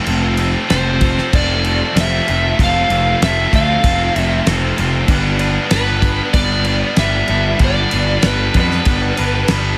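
Classic rock with a driving, swaggering mood at 95 BPM in a straight 4/4, built on an overdriven, double-tracked electric guitar riff with spring reverb, sitting up front beside a growly fuzz bass and a damped 70s drum kit with a fat snare, tight kick and dark crash cymbal. An overdriven slide guitar enters at 0.7 seconds with a warm, fingered melody above the riff as the chords move from F to G at 5.1 seconds. The sound is dry and close, and this short excerpt is cut from a longer piece.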